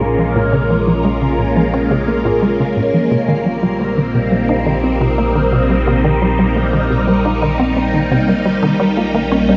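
A swirling string machine sits up front, holding bright, phased chords through this short excerpt of ambient, sequencer-driven space music at 87 BPM in a straight 4/4. Beneath it, a squelchy, resonant blip pluck repeats a riff in the lower register, carried by chorus and tape echo. A faint, round pluck traces arpeggios in the same range as the strings, its tone dark and gentle, with a filter sweep running across the whole passage. A fat analog bass holds a single low note throughout. The harmony moves from Bbm7 to Cm7/Bb at 3.1 seconds and Eb7/Bb at 8.6 seconds, all over a Bb in the bass. A wet concert-hall reverb and a dulled top end lend the mysterious, cosmic mood a distant, enveloping air.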